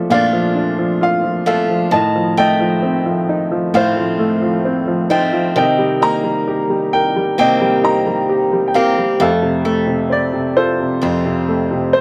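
The recording sounds dry and close, in the manner of a 1970s studio, with only a light touch of reverb. This tender, nostalgic acoustic folk-pop ballad moves in a straight 4/4 and is cut from a longer piece, lasting 12 seconds. A clear baby grand piano sits up front carrying the melody, its natural tone and short sustain giving each note a plain, unadorned quality across a span from deep bass to high treble. Beneath it, a picked acoustic archtop guitar plays arpeggios at a lower level, lending a boxy body to the accompaniment. Both parts play together from start to finish over a harmony that moves from Bbmaj7 through F7/A and Cm7 to settle on F.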